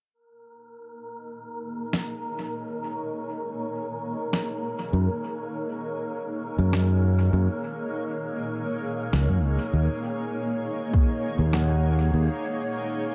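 Up-front fingered electric bass with tube saturation enters at 4.9 seconds to ground this meditative, deep ambient dub excerpt, beneath a cloudy, detuned granular pad swept by a filter, an airy wind-like noise texture, a muffled, overdriven, pitched-down electronic snare with dub echo, a brief tape-warm electronic kick at 10.9 seconds, and bright, twangy pedal steel arpeggios with slide in the background from 10.0 seconds, set in a dark production with light reverb.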